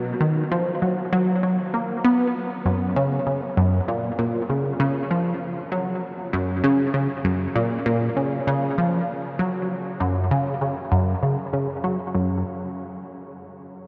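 A straight 4/4 pulse at 98 BPM drives this ambient piece in F# major, cut from a longer work and carrying an expansive, luminous mood. A tight, sequenced synth plays solo from 0.0 to 12.4 s, ranging from F#2 to B3 and sitting up front in the mix. Its detuned sawtooth tone has a fast attack and a filter pluck, yet it stays sustained, with chorus, phaser and analog delay coloring the sound. The whole recording sits in a vast, echoing space, bathed in a huge, wet reverb with a 7.9-second decay and given a cassette-tape character. A new section begins at 12.1 s and carries on briefly after the synth stops.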